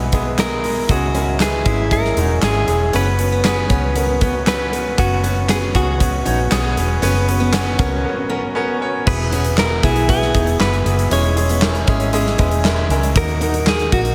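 This hopeful piano-driven pop excerpt opens with a bright concert grand piano, a clean, direct-recorded electric guitar carrying the melody, a soft, flute-like tonewheel organ holding very quiet sustained chords, and a dark, foam-muted vintage bass. A huge arena drum kit and a picked steel-string acoustic guitar riff join almost at once. The drums sit up front with a punchy kick, a medium-tuned snare, handclaps, hi-hat and crash, and their bright cymbals sit in a pumping room sound. The piano is brilliant and polished, with deep bass and short sustain. It shares a slapback echo with the compressed electric guitar and with the full-bodied jumbo acoustic, which sits in the background with a touch of finger squeak. After a break at 8.0 seconds, the harmony moves from E to Eadd9 at 9.1 seconds, then through C#m/E to D#m, with a grand piano fill at 12.4 seconds, and a lush hall reverb lends the mix a big arena sound.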